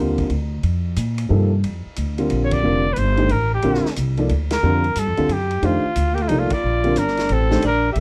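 Searching and hypnotic, this short modal jazz excerpt in F mixolydian swings in 3/4 at 180 BPM, cut from a longer piece. A woody upright piano comps from the start over a pizzicato upright bass with steel strings, sitting up front in the mix, while a vintage acoustic drum kit joins at 0.2 seconds with dark cymbals, a medium-tuned snare, a punchy kick and a rolled-off top on hi-hat and ride. A clear trumpet with light vibrato takes the melody at 2.4 seconds, up front and in a classic jazz style, as the band hits accents together at 2.5, 4.5 and 6.5 seconds. A breathy tenor saxophone adds a mellow second line near the end, with scooped notes and a smooth top. The harmony moves between F13sus4, Bb/F, Fsus4 and Bb, and the dry, close sound recalls a 1970s studio session.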